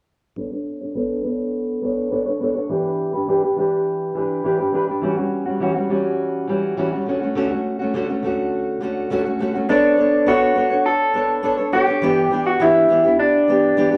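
A straight 4/4 pulse at 103 BPM carries this wistful, hazy indie pop excerpt in B minor, where an up-front fingerpicked steel-string acoustic guitar, dusky with a warbly pitch drift and a low-pass filter, plays through chords such as Bm9, Em69 and Dmaj7 from 0.4 seconds under a filter sweep until 9.7 seconds, when a shadowy, slightly broken-up, lo-fi electric guitar through a small old amp enters carrying the melody, the whole band playing live in one room with a wet, large studio reverb.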